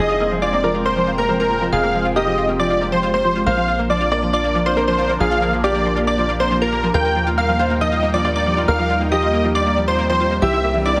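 A dense, compressed supersaw carries the melody up front, its huge, detuned sawtooth stack thickened by a sub octave and colored by cassette tape saturation and dub echo. This short trance excerpt moves at 138 BPM in straight 4/4 with a bittersweet, driving mood in F dorian, cycling through Fmadd9, Bb, Eb and C. A brilliant baby grand piano with audible action noise and a catchy, punchy unison lead sitting in the background both play second lines, each trailed by dub echo, the lead also shimmering through a phaser. Beneath them a lush, slow-attack unison pad holds sustained chords with chorus and phaser, while a round analog pluck runs arpeggios through ensemble chorus and echo from 0.1 seconds. A tight, punchy sequencer bass keeps the low end moving, and a very quiet electronic riser appears at 10.7 seconds just before the cut. The mix sits in a moderately lush hall reverb with a heavily compressed, radio-like sound.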